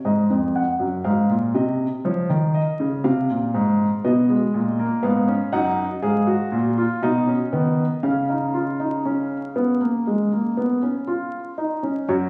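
A dark, mellow concert grand piano plays alone from 0.0 s, sitting up front with deep bass, in this solemn, serious baroque-style three-part fugue at 60 BPM in 4/4, spanning E#2 to F#5 over a G#7, C#, G#m and C# progression, heard through a moderate recital-hall reverb with a phone-in-the-room recording, added studio reverb, vinyl crackle and compression, cut from a longer piece.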